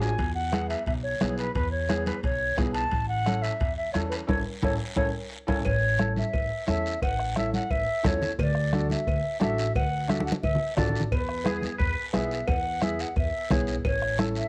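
Cumbia at a brisk 176 BPM in A major, sunny and danceable, this excerpt carries the homely grain of a cassette home recording with moderate studio reverb. A reedy, airy concert flute sits up front with a straight, tongued tone, carrying the melody over a clear upright piano whose woody, intimate accompaniment lets its action noise come through; both flute and piano share a tape tint and plate reverb. Upright bass plays a warm pizzicato line underneath, while a close, dry guiro rasps alongside damped, soft-handed congas, a soft-beaten bombo, and ringing metal-shell timbales and cowbell heard in a live room. The harmony moves through E, A and D, with a band accent from 4.3 seconds and a piano fill leading into the second section at 5.7 seconds. Near the end, a twangy, clean electric guitar with ensemble chorus slips in a brief second line at 11.5 seconds.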